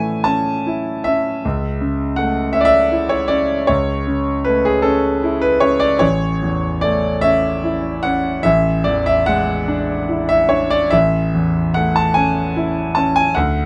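A clear concert grand piano plays alone in this tender, nostalgic romantic nocturne, a 13.7-second passage cut from a longer piece, unfolding with free rubato in a slow 12/8 at about 47-55 dotted-quarter beats per minute in A major, moving from A through A/C# and E7/A before settling back on A, its deep bass and natural, up-front tone captured by close, detailed microphones in light reverb.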